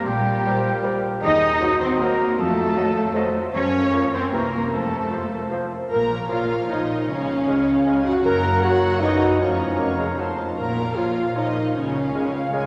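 A mellow, punchy French horn section holds sustained chords at the front of this magical, mischievous cinematic cue in Bb minor at 154 BPM in 3/4. A lush violin section carries the melody in the background, while a hollow, airy flute, oboe, a distant, rich second violin section and a very quiet clarinet add second lines. Ringing harp arpeggios, viola and a very quiet bassoon fill the accompaniment, bowed cellos and double basses supply a lush bass, and the whole fragment sits in a wet church reverb.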